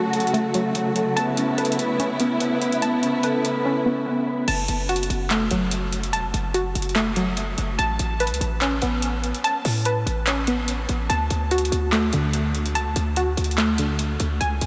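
A glassy, detuned wavetable pluck spins chorused arpeggios through diffuse delay across this eerie, dark half-time trap excerpt, joined at first by a clean, fingered electric guitar and lush bowed strings that fall away near 4.5 seconds, when a punchy, heavy 808-style bass arrives beneath a booming analog drum machine with metallic hats, handclaps and crash, all bathed in a huge, dreamy reverb.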